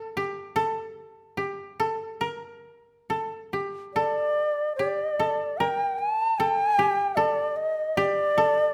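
Japanese chamber music in a still, meditative mood, this fragment of a longer piece drifts in free rubato at around 65-78 BPM in G hirajoshi, with a woody, dry koto plucked with fingerpicks opening alone as a close second line before a long bamboo shakuhachi enters at 3.9 seconds to carry an airy, expressive, tongued melody with vibrato, both up front in a moderate recital-hall reverb.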